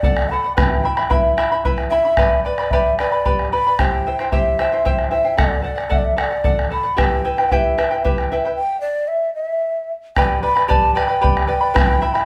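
Andean folk in a straight 6/8, earthy and melancholic, where a breathy, mellow large quena carries the melody with vibrato and a soft attack over a bright, shimmering fingerpicked charango and a deep, dark bombo, all heard from further back in a reverberant studio room, with a full stop from 8.6 to 10.2 seconds before the ensemble returns on a G chord in this fragment cut from a longer piece.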